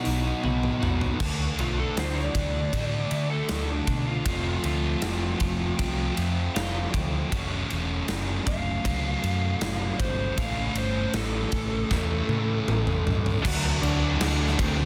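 This bittersweet, anthemic alternative rock clip in D major at 78 BPM opens in half time with a dark, lo-fi lead guitar through a small cranked amp, carrying overdrive and slapback echo, over a twangy twelve-string electric guitar playing phaser-coloured arpeggios until 7.3 seconds, while a sludgy distorted guitar and a thick fuzz guitar grind out riffs in the background. A fingered electric bass adds a round, amped low end, and a big rock drum kit sits up front in a bright stone room with a punchy, softly clipped kick, playing fills before the lead guitar solo begins at 1.2 seconds and again before the chords return to D. At 13.4 seconds a raw, double-tracked garage guitar riff slips in very quietly under a dense, heavily limited master with light reverb.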